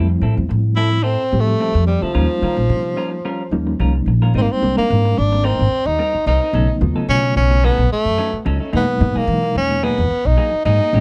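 A dry, close 1970s-style studio sound frames this funky, bright swing-jazz clip, where a woody pizzicato upright bass sits up front beside a breathy tenor saxophone that enters at 0.8 seconds with clear, scooped solo lines and light vibrato, while a reedy, worn, slightly out-of-tune electric piano with fast tremolo supplies accompaniment and a dark, compressed clean electric guitar with lush chorus adds stabs over colorful chords moving from Fmaj7 through Abmaj9 to Emaj9#11.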